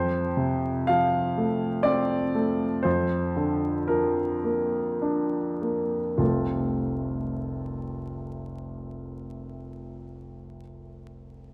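Lyrical and passionate, this brief fragment of a romantic character piece for solo piano moves in 3/4 at a rubato 49-64 BPM in F major, slowing through its opening 6.2 seconds as the harmony shifts from F to Bb over F and settles back on F. The concert grand sits up front with a clear, natural tone and a deep bass, spanning F1 to F5 and tuned to A4 = 442 Hz. A moderate scoring-stage reverb lends a sense of space, while a vinyl crackle adds an aged patina.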